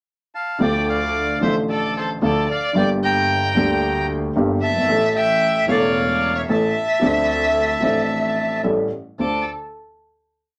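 A reedy, airy bandoneon opens with a pickup at 0.3 s, and this dramatic, tense D minor tango then settles into a rubato 112 BPM, with the bandoneon's up-front, motif-based melody in period phrases partly doubled in thirds by a distant, expressive bowed violin with vibrato and portamento, over an intimate, natural-sounding baby grand piano with audible action noise and a clear, bowed double bass with light vibrato and a smooth top, both playing uneven groups of three and two eighths, all in a wet club ambience until the final chord at 9.2 s.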